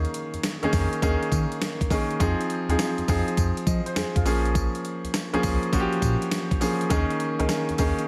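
A clear, polished baby grand piano accompanies this confident, slick new jack swing excerpt in Bb dorian at 102 BPM with a 16th-note swing, joined by a round, deep analog bass and a thumpy, overdriven 12-bit drum machine of kick, snare, hi-hat and tambourine, all in light reverb as the chords move from Eb7sus4 through Fm7 and Bbm7.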